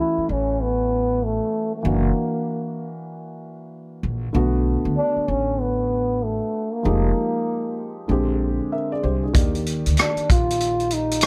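A bucket-muted trombone and a dark baby grand piano open together, setting a smoky, mellow jazz-hop mood at 96 BPM in 4/4 with a swung sixteenth-note feel. The trombone carries the melody in a veiled, distant tone with vibrato and scooped notes, bathed in plate reverb, while the piano accompanies with an intimate, smooth sound where the action noise is audible. A pizzicato upright bass on gut strings joins at 0.2 seconds, woody and thumpy in the low register. The harmony drifts from F#m7 through Bm7 and Fm9 before settling on D#maj7. At 9.3 seconds a vintage drum kit arrives with hi-hat, rim click and a punchy kick, its rolled-off top keeping the short fragment cut from a longer piece soft-edged and up close.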